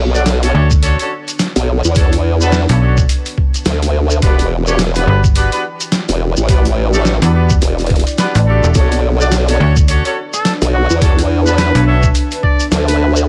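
A swung 16th-note groove at 106 BPM drives this playful, swaggering glitch hop clip in B minor, where a thumpy, gritty, pitched-down kick sits up front with a snappy, metallic FM slap bass and a saturated, chorused formant-sweep wobble bass, joined by a tape-warm boom bap kit of hi-hat, rim click and medium-tuned snare, while a grainy shekere and a deep, moody, sidechain-pumped pad hover in the background, a distant, roomy horn section punches octave-doubled stabs through delay, a solo trumpet with light vibrato enters at 10.3 s, and vinyl crackle plus light digital ambience colour the Bm7 to Em7 progression.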